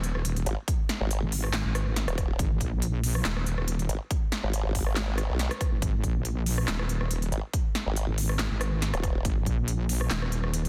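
A heavy, saturated sawtooth wobble bass with chorus and overdrive drives this aggressive half-time wobble dubstep excerpt, joined at 0.5 seconds by a second wobble bass shaped by a formant filter, while a big-room dance kit of punchy snare, crisp hi-hat, handclaps and rim click, plus an electronic kick entering at 0.7 seconds, sits up front with a tape-tinged, large-room character in a dry, dense, heavily limited mix.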